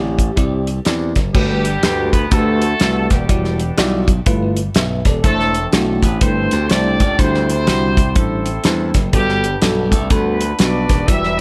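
A very quiet, dark, slightly broken-up electric slide guitar, played with fingerpicks, opens this hopeful, uplifting uptempo gospel cut on a single note, alongside a bell-like tine electric piano heard through its built-in speakers and a bright, punchy, glassy slap bass. At 0.2 seconds an acoustic soul drum kit settles in up front with a fat snare, tight kick, crash and hi-hat, its top end rolled off in a small-room sound, and the slide drops out by 0.8 seconds. At 1.3 seconds a clear, vintage-toned horn section takes over the melody in a pop-style ensemble voicing with octave doubling, light vibrato and a touch of tape echo. The groove sits at 123 BPM in 4/4 with a swung eighth-note feel in G major, moving through lush chords such as Gmaj9, Em9, G13 and D9sus4. The mix is dry and close, carrying a bright, uplifting energy throughout this short section of a longer piece.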